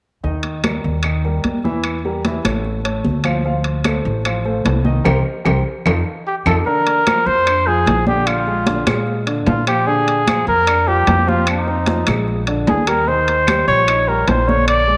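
This lively, danceable slice of Afro-Cuban jazz opens at 0.2 seconds with an intimate concert grand piano in an accompanying role, its action noise audible and its low register deep, over a dark, thumpy pizzicato upright bass with gut strings placed up front. High-tuned congas played with soft hands add a bright, thin-skinned patter in a live room, while ringing metal-shell timbales, close and dry, and distant claves in the background fill out the percussion. Around 5.1 seconds the band hits a shared accent, capped by a drum fill. At 6.3 seconds a breathy trumpet takes the solo melody up front, mellow and smooth on top, with scooped notes and a tape echo trailing its phrases. The harmony moves through diminished, augmented and seventh chords, and the whole mix sits in a wet spring reverb with small-room ambience, cut from a longer piece.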